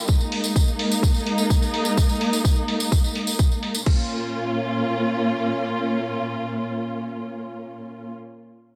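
A dark, close studio string section opens this bittersweet, driving progressive house fragment at 127 BPM in Bb minor, its bowed ensemble chords played with vibrato and portamento and pumping under sidechain as they move from Absus2 to Bbm, while a punchy, up-front electronic kick, a jingly acoustic tambourine and a house kit of bright, low-passed hi-hats and crash cymbal in small room ambience drive the first 4.0 seconds, before the strings carry on alone in light reverb until 8.1 seconds.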